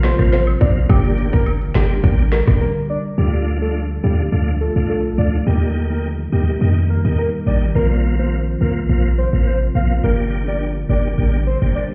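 A bouncy, hypnotic dancehall groove in G minor at 105 BPM opens with an overdriven island pop drum kit of tight kick, woody snare, smooth hats, rim clicks and finger snaps, backed by a close, dry cabasa and woodblock that drops away at 2.5 seconds, with the kit following at 2.6 seconds. A boomy, sine-based 808-style bass, a round, octave-layered synth lead with chorus and digital delay, and a moody, detuned ambient pad with sidechain pumping carry on across the Bbsus2, Gm, Dm and Eb changes, joined from 0.2 seconds by a clean tonewheel organ spun through a fast rotary speaker. The whole cut sounds muffled as if heard through a wall, set in a stone room.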